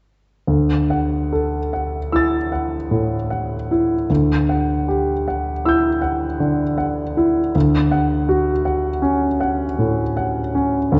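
Swaying in a rubato 9/8 at roughly 47-54 dotted-quarter beats per minute, this impressionist classical fragment for solo piano drifts in D major with a luminous, dreamy mood. A concert grand plays alone from 0.5 to 11.0 seconds, spanning D2 to A6, its tone clear and polished with deep bass, and placed intimately up front so the clatter of its action is audible. The harmony moves gently from Dadd9 to Em9 over a D bass at 4.1 seconds, then settles on Dmaj7 at 7.5 seconds. A recital hall's lingering reverb surrounds the instrument, while the dark, warm production rounds off the upper treble and leaves a faint mains hum beneath the music. Tuned slightly above standard pitch, the passage feels like a single suspended thought lifted from a longer piece.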